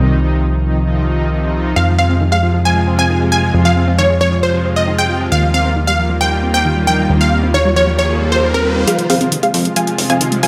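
Uplifting trance with a driving, bittersweet mood, opening on a thick, warbling pad with chorus and a punchy, funky analog bass that sits under chords moving from Cm to Fm and Ebadd9. At 1.8 seconds a full-bodied, wave-folded unison pluck carries the melody through digital delay, joined in the background by an airy supersaw stab and a tight sequenced arpeggio synth. A background riser enters at 6.8 seconds, and at 8.9 seconds tape-warm electronic hi-hats arrive as a filter sweep on the pluck drives the build-up back to Fm.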